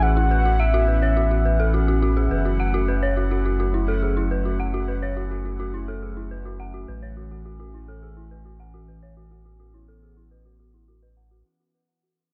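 Cerebral and melancholic, this short IDM passage, cut from a longer piece, moves at 105 BPM in a straight 4/4, with chords shifting from A to F#m at 2.3 seconds and back to A at 6.9 seconds. A velvety synth lead carries the melody only for the first 2.0 seconds, its detuned sawtooth voice colored by chorus, tremolo, cassette tape and tape echo. Beneath it, a warbling, nostalgic pad holds sustained chords with a slow attack and long release, bathed in chorus and reverb. A dark, detuned FM bell plays eerie, inharmonic arpeggios roughened by 12-bit sampler grit, a low-pass filter and tape echo, while a filter sweep moves across it. The round sine sub bass sits up front with its own filter sweep, and a faint bubbling texture of random, resonant filter steps drifts underneath with chorus and reverb. The production is dark and gently ambient with light reverb, and the whole passage fades out across its 11.5 seconds.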